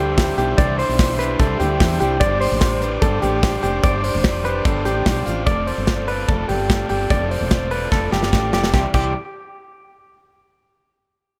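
A bright, twangy clean electric guitar rings out up front with spring-reverbed arpeggios over a warm, overdriven garage guitar, a buzzy combo organ with light vibrato in the background, a woody, round fretless bass and a punchy, polished drum kit that enters at 0.2 seconds and plays a fill at 7.9 seconds, giving this short cut of jangly indie pop a nostalgic, breezy lift as the chords move from Cadd9 through Gsus4 and F6 back to Cadd9.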